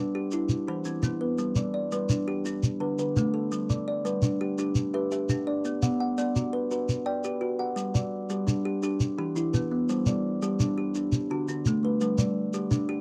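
Two kalimbas open together in a rippling southern African traditional cycle at 113 BPM in a straight 12/8 in G major, one bright and hollow-boxed with a thumbnail pluck, the other mellow and soft on a solid board with a fingertip pluck, both ringing woody and up front as a grainy shekere joins at 0.3 seconds in a dry, close 1970s-style studio sound with light reverb, this cut from a longer piece moving through G, Bm, Em and D.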